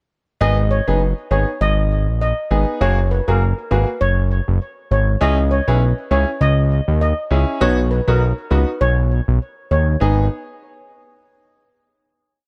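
A syncopated dancehall groove at 100 BPM with a light swing sets a hypnotic, sultry mood in G# minor, as a fat, detuned sawtooth analog bass with a filter sweep sits up front beneath clear, worn grand piano chords and a shimmering steel pan hook played with soft rubber sticks and touched with delay, all three entering at 0.4 seconds and moving through G#m, F#add9, C#m and B before the piece closes on a final chord section from 10.0 seconds in a studio reverb.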